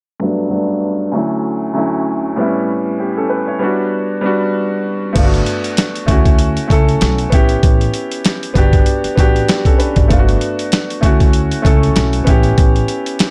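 Confident and nostalgic, this boom-bap hip-hop excerpt moves with a swung 16th-note feel in 4/4. An upright piano opens alone at 0.2 seconds, intimate and up front, its woody tone carrying audible action noise, long sustain and a vintage cassette-tape color, with a filter sweep shaping it through the first section. Its chords cycle through Gmaj7, Dmaj9 and A9, later touching Gmaj9#11 before returning to the same progression. At 5.2 seconds a sampler-style drum kit and a pizzicato upright bass arrive together. The drums sit up front, compressed and pitched down, with a thumpy kick, a medium-tuned snare, hi-hat and crash cymbal, all carrying 12-bit grit and a tape-warm edge. The bass adds acoustic, steel-string depth with a woody, warm tone, all set in a small room ambience.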